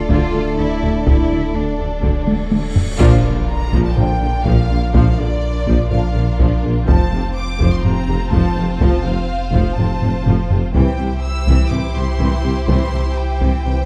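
Dark, roomy recital-hall sound frames this brooding, futuristic hybrid orchestral and electronic film-score excerpt at 124 BPM, where a high symphonic violin melody with vibrato rides over a rich chamber violin second line, clear distant violas, lush cello and double bass sections, a mellow tuba, a deep sine sub bass, shadowy background French horn chords and close, dry taiko drums through Dm, Bb, F and C, with a huge cymbal swell from 2.6 s building into an impact at 3.0 s and another taiko fill at 10.0 s.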